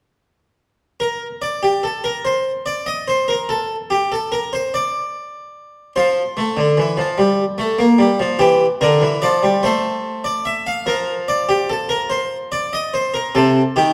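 A solo harpsichord enters at 1.0 seconds in this elegant, stately classical passage, a baroque-style two-part invention cut from a longer piece. It moves in a straight 6/8 at 48 BPM, counted in dotted quarters, and is tuned to A4 = 443 Hz. The instrument is a Flemish-style harpsichord with three sets of strings, and its airy, brilliant, plucked tone sits up front, spanning C3 to F5 in a full sound. The opening bars stand outside any stated harmony until the music settles on F at 6.0 seconds. It then passes through Fadd9, Gm6, F/A, Bb/F and F7sus4 before ending on Cm6 as the passage breaks off at 13.9 seconds. A wet recital hall reverb with a 1.3-second decay surrounds the harpsichord.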